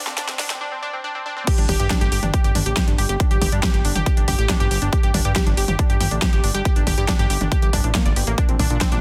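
This emotional, driving uplifting trance excerpt at 139 BPM in 4/4 opens on an F5 power chord, with a fat, detuned sawtooth bass and a big-room dance drum kit playing a short fill, joined almost at once by a round, evolving analog pluck carrying the arpeggios. The fill gives way at 0.6 seconds to a brief break that completes the build-up, and at 1.5 seconds the drop arrives as a punchy, overdriven electronic kick enters up front. From there the harmony sits on open, chordless ground until a Bb chord lands at 8.4 seconds. The saturated bass has a fast attack and sustained body with a filter sweep, while the pluck decays, shimmering with chorus, tape echo, a noise layer and its own filter sweep. The overdriven kit features a huge snare, and sidechain pumping breathes through the bass, the pluck, and the kit's hats, toms and cymbals. Light reverb surrounds a dense, heavily limited modern master.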